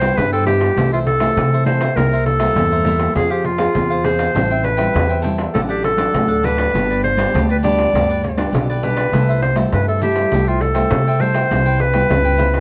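Lively and playful, this short cut from a longer samba and choro piece moves at 101 BPM in a straight 4/4, centred on C major. A clear, classical-style clarinet carries the solo melody up front from start to finish, sitting between F4 and D5. Beneath it, a bright, crisp picked cavaquinho and a dark, fingerpicked nylon-string guitar fill out the accompaniment, while a woody, thumpy upright bass with gut strings plays pizzicato close to the listener. A jingly, band-limited pandeiro played with soft hands adds a vintage percussive lift. The harmony travels from Cmaj7 through C7, Fm and Am7 to G before settling on C6 and back to Cmaj7 near 11.5 seconds, all within one section. A moderate studio reverb surrounds the ensemble, and a worn cassette-tape quality with warbly pitch drift gives the whole recording an aged, wavering character.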